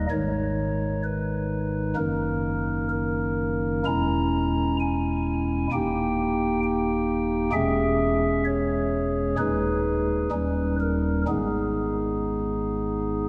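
A pipe organ on a stopped flute register plays alone and sits up front, its soft, hollow tone carrying a chiff at each note's onset and a mellow, baroque-style voicing that spans deep pedal notes to high treble. This solemn, grave chorale-style passage, taken from a longer classical work, moves at a rubato 64 BPM in 4/4 in G# minor, passing through minor harmonies and a D# major chord before a D#7 at 10.3 seconds resolves home to G# minor at 11.3 seconds. A long, wet church reverb surrounds the organ throughout its 13.3 seconds.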